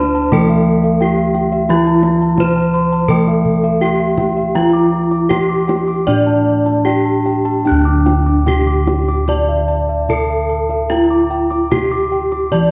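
Dark, round bossed gongs carry a saturated bass line up front, while a bright, shimmering bronze metallophone sings the melody above them with the airy beating of paired tuning. A second ringing metallophone adds accompaniment until 7.7 s, as mellow, padded bossed gongs spin soft arpeggios higher up and a tight kendang sits in the background from 0.3 s. This serene, ceremonial Javanese gamelan fragment is cut from a longer piece, and it sounds like worn cassette tape, with warbly pitch drift and the moderate reverb of a concert hall.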